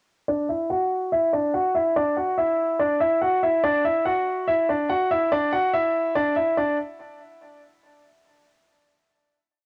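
A half-time hip hop feel at 143 BPM in 4/4 frames this brief, menacing and tense piece, built entirely on a solo concert grand piano that plays from 0.3 to 6.8 seconds as a breakdown. The piano repeats a looping melody doubled in octaves over a Dadd9 chord, like a sampled loop, its clear, intimate tone carrying audible action noise and long sustain up front. A low-pass filter sweep and cassette tape colour shape the piano, set in light reverb with the feel of a home recording on cassette.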